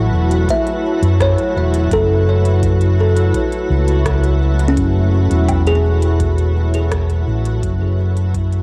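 The recording has the hazy, worn feel of a home cassette, set in a digital ambience, in this short cut from a longer ambient dub piece. A soft organ-like pad holds a sustained F#m11 chord from the start, its pure sine-and-triangle tone with a slow attack, thickened by ensemble chorus, ring modulation and its own bright reverb. A dark, round fingered electric bass sits up front with tube saturation. A kalimba enters at 0.5 s with short, woody, hollow arpeggios through tape echo, while an organic electronic kit adds crisp hi-hats, rim clicks and woodblock soaked in dub echo, and an overdriven analog kick pulses deep in the background. The mood is deep and hazy, and the music fades out from 5.7 s.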